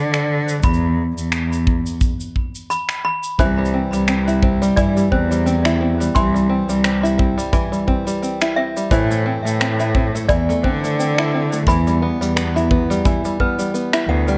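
Delicate, playful folktronica with a gentle swing, cut from a longer piece and kept dry. A bowed cello with vibrato carries the bass line up front, while shaker, finger snaps and a tight, polished kick keep time alongside a clanky, bell-like toy piano that sounds slightly out of tune and trails a digital delay. At 3.4 seconds a twangy, plunky fingerpicked open-back banjo joins with delayed arpeggios as the harmony moves through C, Am and Em.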